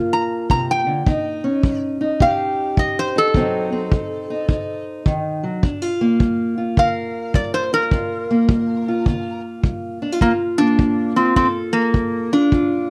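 Acoustic country blues with a brooding, smoky mood, moving at an easy swung pace in four. A fingerpicked steel-string acoustic guitar sets the accompaniment from the very start, its dark, boxy parlour tone sitting up front. A metal-body resonator slide guitar carries the melody from 0.1 seconds, metallic and nasal under a steel bar and fingerpicks, with a slapback echo trailing its lines as it takes a solo through the opening stretch. A kick drum played with brushes enters at 0.5 seconds, punchy yet rolled off at the top. The harmony drifts through minor-seventh and dominant chords before a shift to a fuller minor-ninth colour at 10.2 seconds, and the close, dry studio sound with a touch of reverb gives the piece an intimate 1970s feel, the excerpt being a cut from a longer performance.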